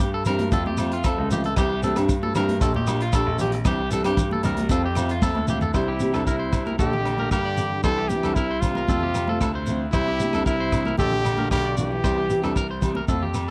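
Joyful and danceable, this highlife guitar band excerpt rides a straight 4/4 groove over a looping cycle of Cadd9, F and Bb6 chords. A crunchy breakbeat kit with a punchy kick and gritty, saturated tone anchors the band, while a clear grand piano with long sustain plays the bass line. A dark, fingerpicked steel-string acoustic guitar supplies accompaniment, and a twangy electric guitar at the edge of break-up weaves arpeggios through a slapback echo. From 0.3 seconds, a grainy shekere fills in the percussion alongside ringing high-tuned congas and distant agogo bells sitting in the background. After a drum fill, a clear trumpet takes the melody up front at 5.7 seconds, joined by a breathy, whispered trombone on a second line, both with light vibrato in a jazz style, all caught in a dry, close 1970s-style studio sound.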